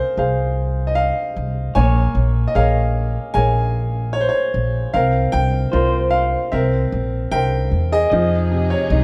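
A band playing live in one room, wrapped in moderate stone room reverb, performs this heartbroken, melancholic acoustic folk-pop ballad in F minor at 76 BPM, cut from a longer piece: a clear, boxy grand piano with short sustain carries the melody up front from 0.0 s, joined at 0.2 s by a woody, thumpy pizzicato upright bass, a slightly broken-up electric guitar through a small old amp picks arpeggios with harmonic tremolo in the background from 1.8 s, and a chamber string section, bowed sul tasto with light vibrato and a soft attack, adds intimate sustained chords from 8.1 s.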